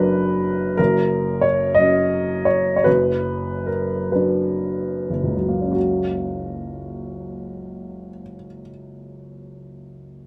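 An intimate, up-front upright piano with a woody tone, long sustain and audible action noise sits in light reverb in this brief passage cut from a longer romantic character piece. Played solo in 6/8 with free rubato, the hopeful, lyrical music gently slows through its first 5.7 seconds while the harmony sways between B minor over an F# bass and F# major. A second section begins at 5.7 seconds on F# major and carries the piece to 10.3 seconds.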